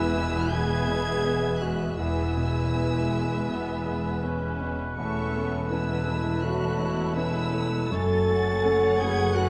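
Cinematic, emotional film score for orchestra, tender and moving at a rubato 77-86 BPM, where a lush, vibrato-rich violin section sings the melody over second lines from a focused chamber violin section, a smooth solo oboe, a mellow clarinet and an airy flute section, while an intimate grand piano with audible action noise, a background viola section and mellow French horns fill in chords above a very quiet cello section and an even double bass section, all moving from E through Aadd9/E to F#madd9 in a dark scoring-stage reverb with a faint mains hum.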